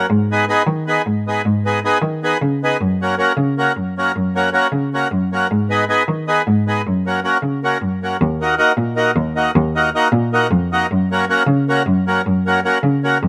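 A reedy, airy accordion opens this festive, exuberant Balkan wedding-band excerpt in F# major, pushing a straight 7/8 at 311 BPM in eighths, while a single bowed cello with a nasal gut-string tone and light vibrato carries the bass up front, the dry outdoor sound keeping both parts close as the harmony turns from G#m and F# toward D#m at 8.2 seconds.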